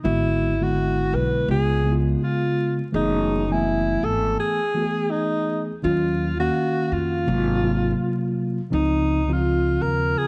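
Nocturnal and mellow, this short jazz-hop excerpt cut from a longer hip hop piece moves at an unhurried 83 BPM in 4/4, with a lazy swing on the sixteenths. A breathy alto saxophone carries the melody up front, playing in a smooth jazz style with vibrato and a soft top end. Beneath it, a clean, direct tine electric piano sits close and mellow, comping through a jazzy progression that passes from G#m7b5 and C#7 to F#m11, then D#m9 and G#13 before landing on C#maj9. A pizzicato upright bass with gut strings adds a woody, thumpy low end, dropping out at 10.1 seconds just before the saxophone and piano finish at 10.3 seconds. The whole mix is wrapped in a moderate echo-chamber reverb and dark, warm production, with vinyl crackle giving it a dusty late-night character.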